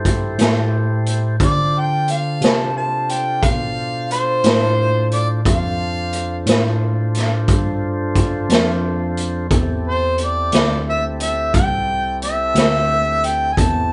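Recorded live in one room with a moderate studio reverb and a dark, rolled-off top, this smoky, brooding slow blues moves at 59 BPM in a straight 12/8, shifting from Am7 to Dm7 and back to Am7 at 9.5 seconds. A raw, saturated, gritty garage kit with a punchy kick and medium-tuned snare sits up front beside a barky, overdriven tine electric piano that carries the bass through a combo amp, while a clear tonewheel organ holds sustained chords through a slow rotary speaker. From 1.4 seconds a warm, jazz-styled harmonica solo takes the melody with light vibrato and scooped notes.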